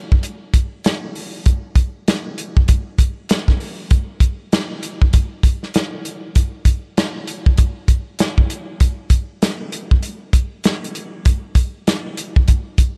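Hip hop at 98 BPM in 4/4, this reflective, gritty passage is cut from a longer piece and rides a 59% swing on the sixteenth notes. A soul drum kit carries the music from 0.1 s to 13.0 s, built from hi-hat, kick drum and snare drum. The kit sounds acoustic, dark and smooth, with a medium-tuned snare, a tight kick and a rolled-off top end. Its dry tone sits up front in the mix, while a light reverb adds a touch of room to the recording. The whole 13-second span stays in a single section.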